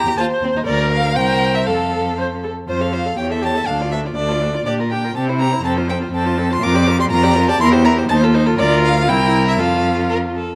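A quick, spirited and cheerful classical-period movement for string quartet in F major at 121 BPM in 2/4: a dark, close first violin carries the melody with vibrato, portamento and expressive soft attacks, a rich second violin weaves a supporting line, a smooth, even viola accompanies from a distance and a clear, focused cello anchors the bass up front, all set in a moderate concert hall reverb. The music moves into a new section at 2.7 seconds in this brief passage cut from a longer piece.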